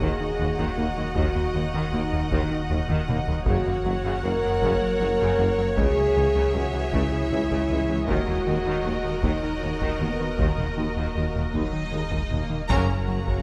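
Opening at once on a vast, brooding blend of orchestra and electronics in 6/8, this cinematic film-score excerpt layers lush violin and viola sections, mellow French horns and a calm, organ-like drone with ensemble chorus and built-in reverb over a fat analog bass riff, a vintage-toned tuba, very quiet cello and distant double bass sections, a deep sine sub bass with octave and heavy-stick taiko in a live room that play a fill near 2.9 seconds, before a clear, focused violin melody enters at 11.5 seconds and warm background trombones join a huge, bright impact at 12.7 seconds for a closing band accent.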